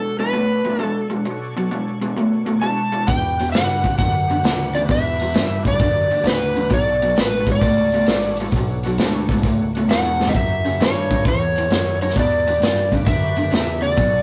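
A dark, overdriven slide guitar carries the melody up front from the start, over a bright, double-tracked garage guitar riff and a gritty tonewheel organ holding sustained chords in the background with key click and a slow rotary speaker. At 3.1 seconds a punchy, growling electric bass and an acoustic vintage drum kit with a punchy kick and rolled-off top join, driving this brooding, heavy blues rock and southern rock excerpt in B minor at 132 BPM with a swung 4/4 feel, and a drum fill lands at 10.1 seconds. The rough rehearsal-room sound sits in a wet studio ambience.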